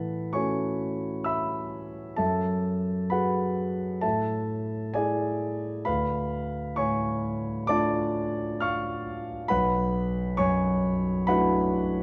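A dark, wet recital-hall sound surrounds a concert grand placed up front, its deep bass and long sustain ringing into a 1.5-second reverb. This dreamy, hazy impressionist solo piano piece in A major moves at 66 BPM in 4/4 with a rubato feel, drifting through A6, F#madd9, A5, Dm6 and Bm11 across a range from B1 to F6. The 12-second passage is cut from a longer work, and the piano's open tone carries it from start to finish.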